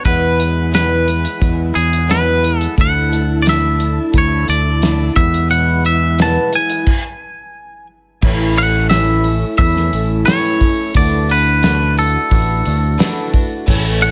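Folk rock with a heartland rock lean, this short excerpt moves at a steady 88 BPM in a straight 4/4, carrying a hopeful, open-road mood in A major. A twangy electric guitar carries the melody up front, its clean, compressed tone riding over a shimmering, octave-doubled twelve-string acoustic guitar that picks out the accompaniment. Beneath them, a fingered electric bass sits close and warm, while a cloth-damped drum kit gives a thuddy, dark-cymbaled pulse with a fat snare and tight kick. A mellow tonewheel organ holds sustained chords in the background, lightly overdriven through a fast rotary speaker, and a jingly tambourine joins at 3.5 seconds. The progression moves from Eadd9 through Dsus2 before a stop at 6.9 seconds, then resolves to A and Dadd9 as the second section opens at 8.2 seconds, all set in studio reverb with a faint mains hum underneath.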